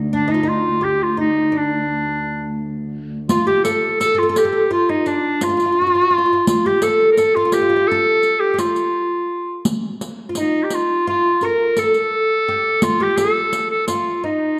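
Turkish makam ensemble music in D makam kurdi, this hypnotic, soulful passage moves at 170 BPM in a straight 9/8, heard in a reverberant recital hall with a dark production. A dark, bowed cello section holds a smooth, vibrato-rich D2 drone until 3.4 seconds, while a bright, vintage-toned clarinet with a soft attack carries the classical-style solo melody up front, joined by a deep, woody, plectrum-plucked fretless oud with double strings on a second line in the same range. From 3.3 seconds, a riq adds close, dry rhythm with bright jingles under soft hands, and the excerpt ends partway through the longer piece.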